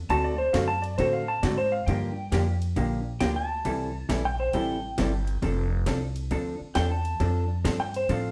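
This short excerpt has a live, one-room sound with moderate studio reverb, and it carries a cheerful, down-home western swing feel at 135 BPM in F major, swung on the eighths. A woody, thumpy upright bass and a hollow-body jazz guitar comping the chords D7, Gm7, C6 and F6 sit up front, while a compressed clean lap steel played with fingerpicks and slide carries a dark second line in the upper register. An electric slide guitar solo runs throughout, set against an unexpected electronic drum kit with a punchy kick, cracking snare and metallic hats.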